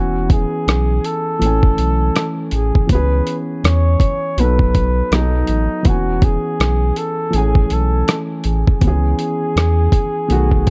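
A breathy, distant flugelhorn carries a melancholic, nostalgic melody with light vibrato and scooped notes over a dark, woody upright piano, both softened by a low-pass filter and joined by a round sine sub bass. At 0.3 seconds a compressed, pitched-down sampler-style kit enters up front with a thumpy kick, hi-hat and rim click, overdriven and gritty at a laid-back 81 BPM with a swung sixteenth feel in C# minor. The flugelhorn's tape echo and the piano's cassette haze sit within a small room ambience as the chords cycle through E6, Amaj7, C#m7 and B7 in this excerpt cut from a longer piece.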